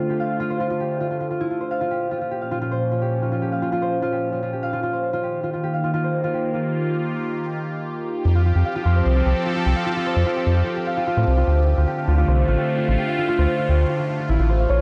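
A swirling, detuned analog pad and a thumb-plucked concert harp open this wistful, playful IDM passage together. The pad holds sustained chords under a filter sweep through the first 8.3 seconds, while the harp's ringing arpeggios trail a tape echo. The chords move from Dm through Bbm and Eb before settling on F, where a round, deep analog bass arrives at 8.3 seconds, dark and up front with a ring-modulated edge. From there the harmony returns to Dm, with bass, pad and harp sharing the foreground in a straight 4/4. At 14.7 seconds a velvety synth lead touches a single Db5 with chorus and vibrato just as the excerpt is cut from the longer piece. The sound is dry and gritty, with only light reverb, and the pad's phaser and chorus give it a bright shimmer against the harp's mellow, acoustic tone.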